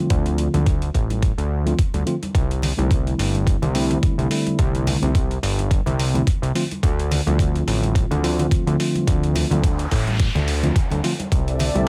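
A dry, close-sounding nu-disco excerpt grooves along at 107 BPM with a feel-good swing, as a mellow tine electric piano pumps under a low-pass filter over a fat, tube-saturated sawtooth bass, gritty overdriven kick and hi-hat, and very quiet bright congas, moving between Dm7 and C69 until an electronic noise sweep enters at 9.5 seconds and a lush, detuned unison pad with chorus and phaser arrives at 11.5 seconds.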